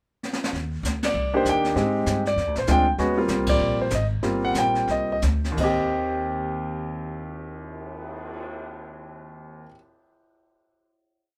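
Swinging eighths in 4/4 carry this short, relaxed and playful jazz piano trio piece, which opens with a brief brush fill from a distant, dark-cymbaled kit sweeping its snare in a small room, while a woody pizzicato upright bass walks beneath an intimate, up-front grand piano whose bebop-style theme, syncopated comping and rootless voicings come with audible action noise, the band striking accents at 1.0 and 3.4 seconds before slowing down into a final chord that sounds from 5.6 seconds in light reverb.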